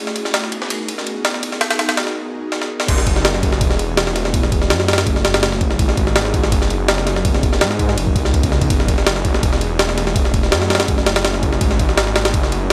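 An ethereal, airy pad opens this dark, raw drum and bass section, holding sustained chords in the background with ensemble chorus and its own reverb. A gritty, pitched-up jungle sampler kit with a thumpy kick and high-tuned snare builds toward a brief break and drum fill, and at 2.9 seconds the drop lands as a thick, menacing detuned saw bass enters up front, its beating tone joining the compressed, tape-warm drums while the harmony alternates between G#m9 and F#m9. A light digital ambience surrounds the mix, and the drums carry the sound of a large room.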